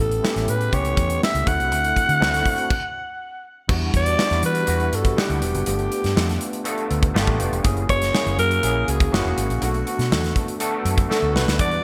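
Polished 1980s jazz-funk pop in E minor at 121 BPM, slick and bittersweet, this excerpt from a longer piece features a breathy, raspy alto saxophone melody with vibrato and digital delay up front over a barky, overdriven tine electric piano with ensemble chorus, a dark, foam-muted fingered electric bass, and a tight, airy studio drum kit with gated reverb. A stop at 2.7 seconds gives way at 3.7 seconds to a new section moving through chords such as Em7, G9, F#7 and Bm7, and a drum fill arrives at 11.1 seconds. The sound is bright 1980s-style digital production with moderate plate reverb.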